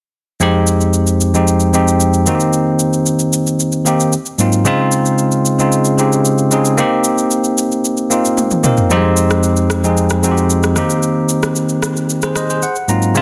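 A bell-like, bright tine electric piano sits clean and up front from the start, moving through soulful chords such as Fm7, Eb6, Ab13 and Dbmaj9 in F minor. Alongside it from the same moment plays a minimal, electronic click drum kit of rim click, shaker and toms with soft clipping on the snare, in a hypnotic, straight amapiano groove at 113 BPM. Under light reverb and a dense, heavily limited modern master, this cut from a longer piece features a drum fill at 8.4 seconds and an electric piano fill from 12.1 seconds.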